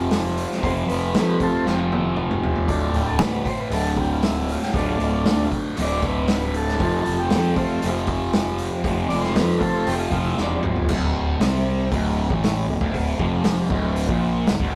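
A straight 4/4 pulse at 117 BPM from an up-front vintage drum kit, with a punchy kick, a medium-tuned snare and dark cymbals, drives this trippy, hypnotic psychedelic rock excerpt in D dorian, where a bright, double-tracked fuzz guitar riff with phaser and a round, overdriven fingered bass move from F to Dm beneath a buzzy combo organ that holds sustained chords with light vibrato until 10.6 s, all set in a rough, tube-saturated rehearsal-room sound with stone room reverb.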